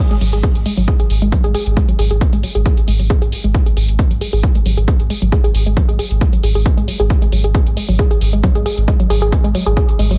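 A straight, driving pulse anchors this dark, relentless slice of peak-time techno, led by a heavy, layered electronic kick that sits up front with the size of a large room behind it, while dry, overdriven analog hi-hats pump against the sidechain. Beneath them a deep, thick sine sub bass holds a low G#1, tube-saturated and low-pass filtered so it swells and ducks under each kick. A woody, mellow wave-folded pluck carries the riff with a short, percussive decay, chorus and a diffuse ambient delay, as a filter sweep runs through the synth line across the full 10.2 seconds, all set in a light digital ambience.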